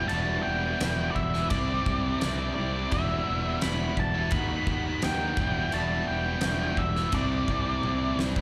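Heard through a club PA with a touch of venue reverb, this dark, cathartic alternative rock fragment pairs a dark octave-fuzz lead guitar melody with a bright, thick fuzz guitar riff and a scooped high-gain guitar riff in the background, all three with slapback echo, over a growly, up-front fuzz bass and a huge arena drum kit with a fat snare, punchy kick, crashes and toms, as the chords move between Em, Cadd9 and B/D# before a drum fill at 7.8 seconds.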